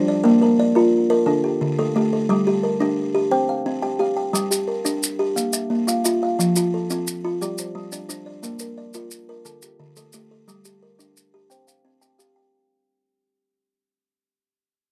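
The rhythm rolls in a steady 12/8 cycle, an interlocking mbira-style pattern in the southern African traditional vein that feels trance-like and hypnotic. A buzzing kalimba sits up front, its woody, fingertip-plucked arpeggios carrying a dark, rattling edge over a hollow box resonance. A second, plainer kalimba plays softer arpeggios across the same span from the opening, adding mellow, short plucks to the cycle. Grainy maracas enter at 4.4 seconds, sitting close and acoustic in the mix. The harmony circles through Bb, Gm and F with open fifths between them, under light reverb in an outdoor setting, and the whole fragment, cut from a longer piece, fades out across its length.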